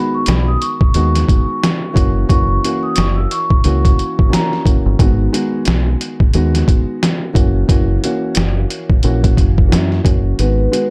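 A dark, woody upright piano with a slightly detuned, cassette-worn tone and a soft-mallet vibraphone ringing through tape echo open this moody, reflective boom-bap excerpt at 89 BPM in G# minor, joined at 0.3 seconds by a round, deep fingered electric bass and an up-front, overdriven, pitched-down sampler-style drum kit with a thumpy kick, while the vibraphone drops out at 4.6 seconds and returns at 10.4 seconds as the kick falls silent over the swung G#m7 to F#7 changes in a dry, dark mix.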